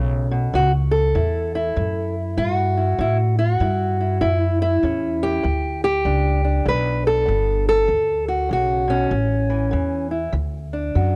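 Swaggering and gritty, this short excerpt of acoustic country blues has a fingerpicked old ladder-braced guitar carrying the melody with a boxy, dark tone from aged strings, while a thumpy pizzicato upright bass on gut strings sits up front beside it in a dry, close 1970s-style studio sound, moving through A, G and D with a swung feel.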